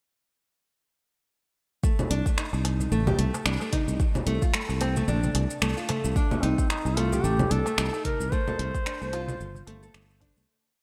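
A swung, overdriven deep house beat of a deep, soft, up-front kick, congas, finger snaps, closed hi-hat and shaker drives this mystical organic downtempo piece from 1.8 seconds, joined by a growly, sidechain-pumped fretless bass in a dotted rhythm and a very quiet, crisp darbuka. A full-bodied, fingerpicked nylon-string guitar with finger squeaks and delay circles a ten-step arpeggio loop that drifts against the bar, over light reverb and digital ambience. At 6.2 seconds a mellow, up-front duduk takes a folk-style solo of call phrases with vibrato and slapback echo, while the piece fades out from 7.6 seconds.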